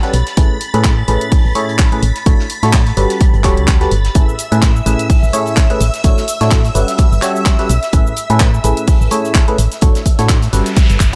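Piano house with a feel-good, joyful mood, this brief cut from a longer piece moves in a lightly swung groove over a looping progression of Amaj9, Dmaj9/A and Gmaj9#11 chords. A barking FM electric piano carries the riff with a biting, percussive attack and a noise layer, treated with phaser, delay and sidechain pumping, while a shimmering vintage string machine of violins holds sustained chords high above with ensemble chorus and its own pumping. Underneath, a solid FM bass sounds round and dark with a fast attack, entering at 0.1 seconds and also pumping. A layered house kit of cabasa, handclaps and hi-hat, re-recorded in a large room, plays from the start alongside a very quiet acoustic soul kit adding hi-hat and a medium-tuned snare from a small room. The electronic kick drum arrives at 0.4 seconds, punchy, tape-warm and up front. A noise sweep fills the final second from 10.2 seconds, and the whole mix sits in a digital ambience.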